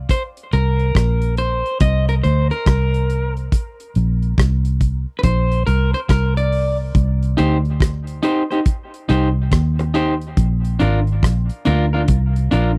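A dry, close recording with little reverb and a 1970s studio character opens this roots reggae excerpt, cut from a longer piece and moving at a slow 70 BPM in 4/4 with a swung sixteenth-note feel. The mood is hypnotic and serious, anchored by a vintage muted fingered electric bass that sits up front with a dark, round, foam-muted tone in a low register. A damped 70s drum kit of hi-hat, kick drum and rim click sounds tight and mid-forward, its top end rolled off. An electric guitar at the edge of break-up plays accompaniment with a twangy, compressed edge and a dub echo trailing its notes. A clean electric guitar solo carries the first section until 6.9 seconds, over a Bbsus2 chord, before the second section shifts to C minor and then settles on Bb at 10.4 seconds.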